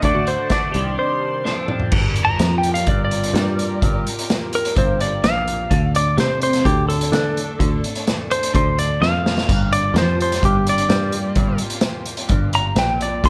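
A straight 4/4 beat at 127 BPM drives this hypnotic, trippy psychedelic rock excerpt in G minor, played on a vintage drum kit with a punchy kick and dark cymbals in a pumping small room, with drum fills at 1.4 and 9.0 seconds. A round, foam-muted picked bass and a double-tracked clean electric guitar riff treated with phaser support a bright, twangy lap steel melody with slapback echo, which sits up front, and an electric slide guitar solo runs from 1.9 seconds. Distant, reedy chamber strings with a gut-string tone hold sustained chords in the background as the harmony moves from Gm7 to D5 and back.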